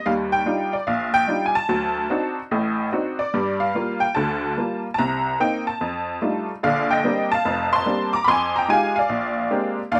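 Moody and swinging, this short solo jazz excerpt moves at 146 BPM in 4/4 with a firm swing on the eighth notes. A lone honky-tonk upright piano carries everything, its detuned, jangly tone sounding vintage and bright as it sits up front in the mix, ranging from a deep F1 up to D6. The opening section rests in G minor, drifting through lush harmonies such as Ebmaj9, D7b9 and Gm7 before an F13 turns the music toward Bb major at 6.6 s. From there a second section settles on a Bb69 chord, passes through Fm9 and lands on Bb13 as the clip breaks off at 10.0 s. A moderate studio reverb lends the piano a modest sense of room, and the fragment feels lifted from a longer performance.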